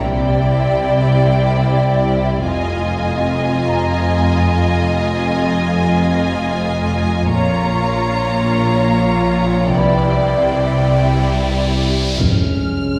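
A straight 3/4 pulse at 74 BPM drives this ominous, uneasy suspense film cue, where two lush bowed violin lines with vibrato, a melody and a smoother, up-front second line, sit over rich cellos and double basses in the background and a mellow, evolving sawtooth analog drone with chorus; a bell-like celesta adds delicate, ringing color from 3.7 s, an electronic riser and sub drop build from 9.5 s, and at 12.2 s a French horn section, very quiet taiko, close dry timpani and a dark, expressive high violin texture arrive together on the impact, all within a reverberant recital hall.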